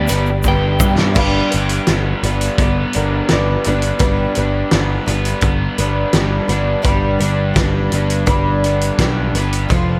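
Nostalgic and hopeful, this short excerpt of folk rock and heartland rock moves at 84 BPM in G mixolydian, driven by a gritty, saturated indie drum kit with a fat snare and a growly, punchy picked electric bass, while a woody, shimmering twelve-string acoustic guitar and a double-tracked overdriven garage guitar riff carry it through, all soaked in dub echo except the bass. In the opening second a bright, twangy twelve-string electric guitar melody, a very quiet tonewheel organ with slow rotary and key click, and a grainy tube shaker sit in the background as a drum fill runs from 0.5 to 1.2 seconds. From 1.1 to 4.0 seconds an intimate upright piano with audible action noise adds a second line, and the echo-heavy mix keeps a small-room ambience.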